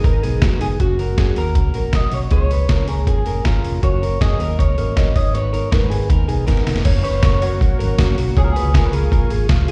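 Up front sits a lo-fi, sampler-style drum kit, compressed, pitched down and muffled, with a thumpy kick and fat snare that sound re-recorded in a large room. It drives this breezy, nostalgic slice of jangly indie pop at 159 BPM in F# major. Beneath it, a dark, round, foam-muted electric bass anchors the chords. A full-bodied, jumbo steel-string acoustic guitar is fingerpicked with slapback echo. Two slightly broken-up electric guitars through a small old amp carry the top: one plays compressed arpeggios with slapback and tape echo, while a twangy lead melody enters at 0.6 seconds, adding plate reverb to the same echoes. A drum fill at 6.5 seconds leads into the second section, just as a very quiet, smooth and airy analog pad with detuned sawtooth chorus returns at 6.8 seconds, after a brief opening appearance. The clip is cut from a longer piece and comes across like a live gig heard through the venue's PA, with a recital-hall reverb.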